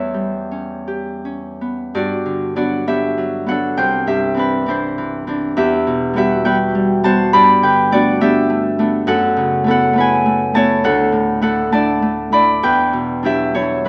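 Mysterious and gentle, this classical solo harp passage, cut from a longer piece, sways in a loose 6/8 with uneven beats and free rubato. The Celtic harp sits up front, bright and ringing as its fingerpicked chords drift through colours like Gmaj7, F#m11 and Em9, spanning a deep low register to high, sparkling notes. A wet recital-hall reverb surrounds it, while worn cassette tape adds a warbly pitch drift that gives the sound an aged, wavering character.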